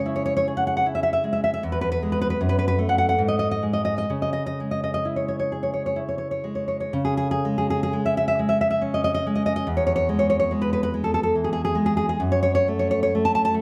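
A fingerpicked nylon-string guitar plays alone and up front from the first second, with a deep classical tone, audible finger squeak and a range from E2 to A5, in this romantic, sunny yet nostalgic piece in C# minor, tuned to A4 = 441 Hz. The rubato 3/4 pulse drifts between 57 and 78 BPM as the harmony moves through C#m, E and F#m, passes through a chordless moment and returns to C#m. It then opens a new section at 6.9 seconds that colours the line with an E6 chord before settling back on F#m. A moderate scoring-stage reverb and a dark, warm production frame this excerpt from a longer piece.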